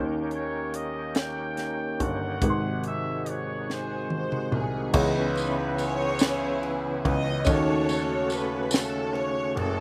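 Fervent and solemn, this slow gospel passage moves at 48 BPM in a straight 6/8, cut from a longer piece in C# minor. A clear, punchy trumpet carries the opening melody with scooped notes in a vintage pop style, handing off to a rich, smooth string section that enters at 3.7 seconds with bowed vibrato, close and up front. Underneath, an overdriven tonewheel organ holds thick, gritty sustained chords through a slow rotary speaker and chorus vibrato, its key click audible, while a dark, woody upright piano sits boxy and mellow in the background with slapback echo. A grand piano plays the bass line with an intimate, natural tone and audible action noise, and a crisp fusion drum kit with dark cymbals, a high-tuned snare and a punchy kick comes in at 0.3 seconds, playing a fill just before the second section begins at 5.0 seconds. A jingly, band-limited tambourine joins at 4.9 seconds. The harmony moves from D#7 and G#7 to C#m9 and D#m7b5, and the dry outdoor recording leaves the parts close and present.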